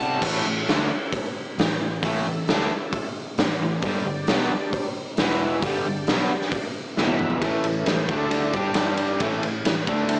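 A crunchy, double-tracked overdriven guitar riff sits up front over a raw garage drum kit with a gritty, saturated, rolled-off sound and a tight kick, setting a driving, swaggering blues rock and southern rock groove. Beneath them, a round, punchy, foam-muted picked bass holds the low end, while a thick tonewheel organ with slow rotary speaker and chorus vibrato sustains chords in the background. A drum fill at 7.0 seconds leads into a new section at 7.4 seconds, and this brief excerpt, cut from a longer piece, has moderate studio reverb and a small-speaker sound.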